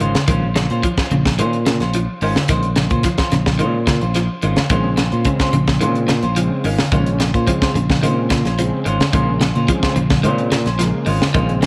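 A funk drum kit with a high-tuned snare and tight kick sits up front as a warm fingered bass, low-tuned congas in the background and two dark, clean electric guitars, one picking spring-reverbed arpeggios and the other playing scooped stabs, circle a single Bbm9 chord in a funky, hypnotic afrobeat groove, joined at 4.7 seconds by a reedy combo organ with heavy vibrato in this fragment of a longer piece.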